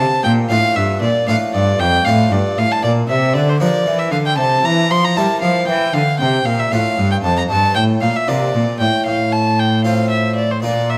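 Heard in a reverberant recital hall, this excerpt of a grave, flowing baroque-style sonata movement in F major moves at 77 BPM in 12/8, with an up-front, gut-strung violin of airy bow and reedy period tone carrying the melody from C5 to C6, a close, rich and nasal cello holding the bass, and a full French-style harpsichord with two sets of strings supplying the plucked continuo accompaniment as the harmony passes through Dm, Gm/Bb, C7 and Gm7 before reaching F/A at 9.1 seconds.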